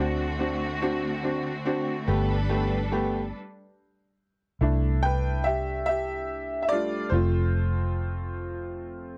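Set in a gently rocking six-eight metre with a straight feel, this heartfelt, tender pop ballad excerpt opens with a clear, woody upright piano carrying the accompaniment, its slightly detuned, boxy tone and long sustain giving it a worn, intimate character. Beneath it, a vintage fingered electric bass sits up front with a dark, round, foam-muted sound. A lush studio string section adds bowed, sustained chords with smooth vibrato, rich and even though set at a distance, before dropping out at 3.3 seconds. The harmony moves from D7 to Gadd9, then settles into C6 and F as the piano steps forward as the featured voice from 4.6 seconds, with the bass still underneath. The dry, close production has little reverb and the feel of a 1970s studio session.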